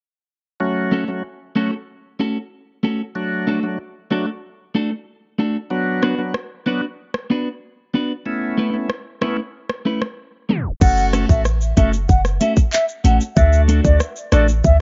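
A dark, lightly reverberant production opens this summery, bouncy dancehall excerpt at 94 BPM, where a reedy tonewheel organ with key click and slow rotary speaker and a twangy, compressed clean electric guitar playing arpeggios carry the F#m, D, Bm and Aadd9 changes before a tight, metallic-hatted island pop kit with handclaps and shaker arrives at 6.0 seconds, and after a tape stop a deep, boomy 808-style bass, an airy baroque flute melody with tape echo and a very quiet tube shaker all enter at 10.8 seconds.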